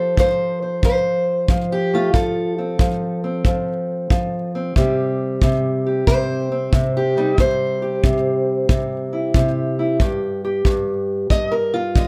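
Acoustic country blues with a gritty, soulful mood, moving at 92 BPM in 4/4 with a swung eighth-note feel in this short excerpt cut from a longer piece. A fingerpicked steel-string parlour guitar carries the melody from G2 to Eb5, its dark, boxy tone sitting up front in plate reverb, while a punchy kick drum with brushes joins at 0.2 seconds, up front in a small room. The harmony moves from F to C5 at 4.8 seconds and to G5 at 10.0 seconds, all under a light reverb.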